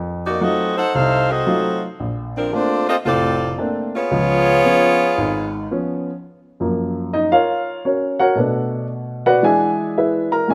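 A close-miked saxophone section leads this joyful, brassy jazz excerpt, carrying the melody up front from 0.3 to 5.7 seconds over a swung 4/4 feel at 113 BPM. A baby grand piano with a natural, up-front tone supplies the accompaniment throughout, spanning from its deep low register up into the upper keys. The harmony moves through F7b9, Bbmaj9 and Db7 in the opening stretch before shifting to F#maj7, Bm7 and E7. Once the horns drop out, the piano takes a solo from 6.2 seconds to the end at 10.5 seconds. A moderate echo chamber reverb gives the short fragment a roomy, lingering tail, and it sounds lifted from a longer piece.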